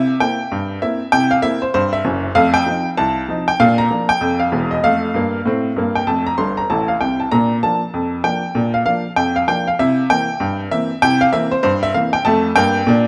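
Lively and playful, this ragtime piece at 97 BPM in 2/4 swings its sixteenths on a solo upright piano in Bb major, whose woody, present, short-sustained tone sits close in a moderate echo-chamber reverb, moving through C7, F7 and Bb harmonies with a brief fill at 6.4 seconds before settling on F at 12.3 seconds.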